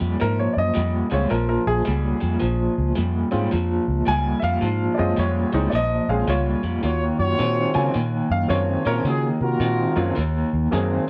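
Brooding and soulful, this electric blues shuffle rolls along with a swung feel, built on a twangy, slightly broken-up guitar riff shimmering with tremolo through a small old amp, over a dark, round, foam-muted electric bass. A clear, woody upright piano comps with short sustain and a touch of plate reverb, and at 6.8 seconds, as the harmony moves from Bbm9 to Ebm9, a soft-attacking horn section adds jazzy stabs with vibrato and slapback echo until 10.1 seconds. Light room reverb frames this fragment, which is cut from a longer piece.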